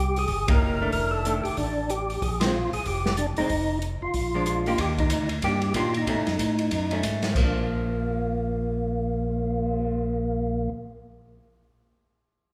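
A brisk swing at 187 BPM in 4/4 drives this greasy, soulful soul jazz organ trio fragment in Bb major, with the band hitting accents together at 0.4 and 2.4 seconds. A percussive tonewheel organ carries the melody, its fat, lightly overdriven tone marked by third harmonic percussion, key click, chorus vibrato and a slow rotary speaker. A second tonewheel organ plays the bass line in a clean, warm voice through its own slow rotary speaker, both organs sitting up front. An open jazz drum kit with dark cymbals, a medium-tuned snare and a boomy kick keeps time using ride, hi-hat, crash and a cymbal swell, while a dark, clean, picked hollow-body archtop guitar adds accompaniment from 0.5 seconds. The harmony moves through colourful chords such as Cm7, F13, Bb9sus4 and B9 before settling on Bb, all bathed in the lush reverb of a church or concert hall.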